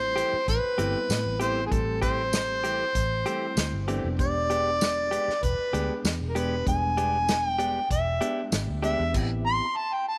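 This mournful, brooding soul blues fragment opens with a mellow harmonica carrying the melody over a reedy electric piano shimmering with fast tremolo, and a dark, round, foam-muted electric bass. In A minor at 97 BPM in 4/4 with a straight-eighth feel, the harmony moves from Am7 to E7#9 at 4.2 seconds, then returns to Am7 near the close. The harmonica sits up front in a jazz style, its soft-attack, scooped notes smooth at the top yet touched with overdrive. A clean, compressed electric guitar recorded direct adds picked stabs bathed in spring reverb. A soul drum kit with a tight kick, medium-tuned snare, dark cymbals, hi-hat, tambourine and crash has a roomy, rolled-off sound. A moderate plate reverb with a 3.0-second decay lends the whole mix a lingering air.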